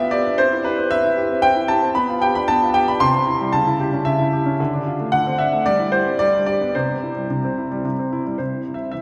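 A warm, intimate concert grand piano sits up front with deep bass and audible action noise, playing an elegant, cheerful classical-period sonatina in C major at 113 BPM in 3/4, moving through a progression from C through A7/C# and D7 back home to C, all bathed in a wet church reverb across this 9-second excerpt cut from a longer piece.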